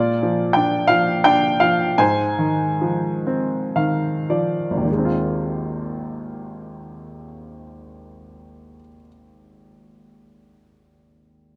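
Calm and warm, this short excerpt from a longer classical work features a lyrical solo piano in 6/8, played with free rubato at a slow pace of around 33 to 61 beats per minute. A clear baby grand carries everything alone from 0.0 to 11.6 seconds, spanning from Ab1 up to Ab5 in an Ab lydian colour. The harmony moves from Bb at the opening to Ab6 at 2.0 seconds, and the playing slows through the first 4.9 seconds. A piano fill from 3.3 to 4.9 seconds leads into a new section that carries the phrase onward. Close, detailed microphones keep the instrument natural and up front, set within a moderate recital-hall reverb.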